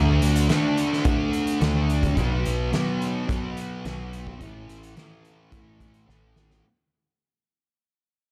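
A thick, double-tracked fuzz guitar sits up front with a chorus-tinged riff over D5, B5 and A5 chords, joined from the start by an overdriven picked electric bass in this hazy, blissful slice of shoegaze and dream pop at 108 BPM in a straight 4/4. A loose indie drum kit enters at 0.2 seconds with a punchy kick, fat snare and hi-hat in a pumping room, closing with a drum fill from 6.1 seconds. The whole fragment fades out under light reverb and a dark, warm production.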